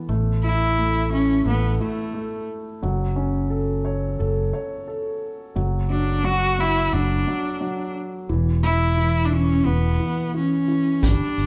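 A rich, bowed cello carries the melody in this nostalgic, hopeful acoustic folk-pop ballad, its light vibrato and airy, earthy tone sitting up front over a woody upright piano whose action noise is audible and a warm fingered electric bass. The chords move from A5 through F#m and D/F# to E5, and at 11.0 s a roomy drum kit played with bundle sticks enters on hi-hat and a punchy kick drum. The moderate reverb of a church or concert hall surrounds this short passage cut from a longer piece.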